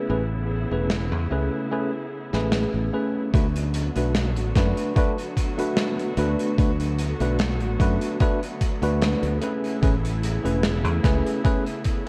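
Vaporwave at a slow 74 BPM in D lydian with a light swing, nostalgic and dreamy, cut from a longer piece and carrying a cassette-tape haze in a small, lightly reverberant room. A bell-like tine electric piano with subtle chorus and analog delay carries the accompaniment up front over dark, woody bowed strings, played sul tasto with vibrato and carrying 12-bit sampler grit, while a bright, growly fingered bass sits punchy beneath. Hi-hat and snare with gated reverb come in at 0.9 seconds, and an overdriven, thumpy electronic kick lands at 3.3 seconds as the harmony moves from Amaj9 to D6, returning to Amaj9 at 9.4 seconds.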